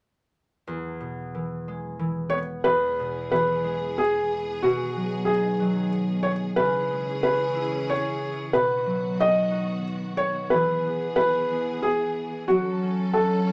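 A sleepy, innocent children's lullaby in E major at 91 BPM in 3/4 opens with a bright, ringing concert harp accompaniment at 0.7 seconds, joined at 2.3 seconds by an intimate felt-muted upright piano melody with audible action noise up front, and at 2.6 seconds by a lush, bowed studio string section holding smooth sustained chords through E, B6, C#m, B, E and F#m in a small room's moderate reverb, in what is cut from a longer piece.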